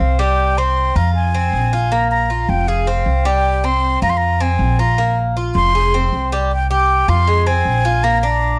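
Sultry and warm, this short cut of Cuban son and guajira moves at 157 BPM in a straight 4/4, with a breathy, soft-attacked concert flute carrying the melody close to the microphone, a bright, metallic Cuban tres picking arpeggios on its doubled strings, and a woody, thumpy pizzicato upright bass on dark gut strings holding down the low end, all three up front in a detailed, lightly reverberant sound as the harmony circles around F minor and shifts into a new section at 6.5 seconds.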